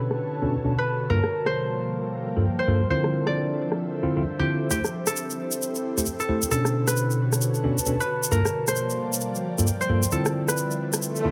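A worn, slightly out-of-tune tine electric piano anchors this soulful, skippy two-step garage excerpt with filtered stabs and a filter sweep, while an up-front, fingerpicked concert harp rings out a dub-echoed melody. Around them sit an ethereal, detuned ensemble-chorus pad with sampler grit and a soft, breathy chorused pad. A layered electronic rim click with filtered hats and snare drives the swung groove, a grainy, close egg shaker joins at 4.7 seconds, and an electronic swell arrives at 11.1 seconds, all within a moderate plate reverb.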